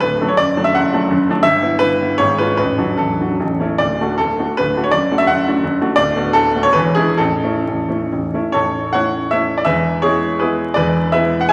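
Classical romantic piano music: a proud, rustic triple-time dance in 3/4, cut from a longer piece, with dotted rhythms and a flexible rubato feel that moves between 127 and 180 BPM. A clear baby grand piano plays solo throughout, ranging from the deep bass at A0 up to G#5, and it sits up front with a natural tone and short sustain. The harmony opens in D major, passing through chords such as D/F#, Em/G and G#dim7 before settling back on D, then turns toward A major from 6.0 seconds by way of Bm7/D and E7. A new section begins at 8.5 seconds and leans on an E chord before the excerpt closes at 11.5 seconds. The piano is wrapped in a wet recital hall reverb, and a layer of vinyl crackle gives the recording an aged, antique surface.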